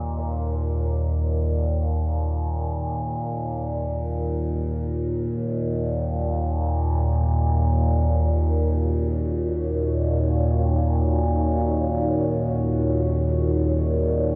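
A dark ambient drone in free time opens with a resonant, up-front drone, low in the register between Eb2 and Bb2, its sawtooth and sine tones carrying slowly moving overtones under chorus and its own reverb. From 0.2 seconds a bronze singing bowl rings in barely audible, a metallic, meditative shimmer with slow beating, struck softly with a felt mallet. At 6.4 seconds a moody analog pad fades in with sustained chords between Ab4 and Db5, a deep blend of sawtooth and triangle with a sub octave, colored by chorus and phaser and mixed well behind the drone. The harmony rests on Eb minor throughout, with slow attacks and long sustains keeping the sound evolving rather than moving. A vast cathedral reverb surrounds the parts, making this cut from a longer piece feel dark and cavernous.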